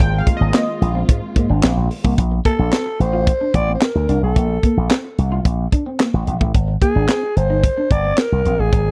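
Smooth and feel-good, this excerpt of early-eighties boogie funk moves at 110 BPM in Bb major, with a tight, dry drum kit of high-tuned snare, hi-hat, kick and handclaps and a bright, punchy slap bass through an envelope filter sitting up front, while a slightly broken-up electric guitar riff with analog chorus runs throughout. A glossy, chorused polysynth takes a short solo in the opening 2.2 seconds, backed by a dark, woody string section holding lush bowed chords. From 2.5 seconds a growling, raspy alto saxophone carries the melody up front with scooped notes and light vibrato, all captured in a close, 1970s-style studio sound with small room ambience.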